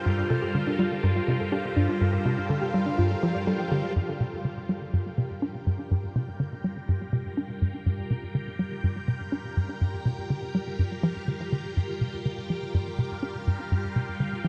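A swirling, vintage string machine opens this hypnotic, cosmic slice of sequencer-driven space music, holding sustained chords through a phaser and ensemble chorus, while a bubbling stepped-filter texture with detuned, resonant sawtooth tones sits in the background. A tight, punchy sequencer bass enters almost at once, driving a riff up front with a fast-attack filter pluck and a touch of delay, and a filter sweep moves across it. A soft, round pluck, dark and full-bodied, plays gentle arpeggios in the background with chorus and delay, then stops at 3.8 seconds. At 4.0 seconds the piece moves into a new section, where the string machine and the bubbling texture fade in over the bass riff, which keeps pulsing on a Gm7 foundation in straight 4/4. Shimmer reverb trails the strings, texture and pluck, and the whole mix floats in a huge, wet ambient space with a long 7.9-second decay.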